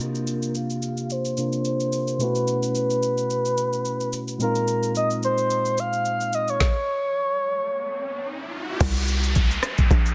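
Deep and late-night in mood, this amapiano excerpt moves at 109 BPM in 4/4 with a 16th-note swing, built on suspended ninth chords that slide down from C9sus4 through B9sus4 to Bb9sus4 under a filter sweep. A soft, breathy flute-like synth lead carries the melody between Bb4 and F5, its sustained tone coloured by chorus, vibrato, a low-pass filter and digital delay. Beneath it, a clean tine electric piano plays accompaniment with analog chorus until 6.6 s, when the harmony stops, and a riser builds from 7.5 s. The smooth R&B drum kit runs throughout, its knocking kick and woody, softly clipped snare joined by rim click, shaker and crash, with a small-room character. At the drop at 8.8 s, a tight, punchy log drum bass enters on Bbsus2, its fast, percussive FM attack decaying, while the dense, heavily limited master carries light reverb and a digital ambience.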